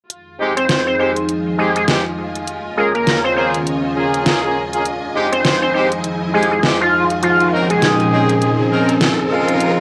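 This excerpt opens at once with a dark analog pad holding sustained chords, a pop drum kit playing hi-hat and snare, and a clear symphonic string section in the background. It is a playful, funky glitch hop track in F minor at 101 BPM, with a swung sixteenth-note feel, moving through Fm7, Eb9sus4 and Bbm11 as one continuous build-up. The drums sit up front, layered and overdriven with a deep snare, while the moody pad carries chorus, phaser and a cassette-tape grain, and the strings add a biting, bowed texture. A brilliant, tight horn section comes in with stabs at 0.4 seconds through a low-pass filter and analog delay. At 0.6 seconds an edgy, tearing sync lead takes the melody, bright and evolving, with lush chorus, vibrato and delay. An electronic riser joins in the background at 2.7 seconds, and the whole mix has a homemade cassette character with light reverb and digital ambience.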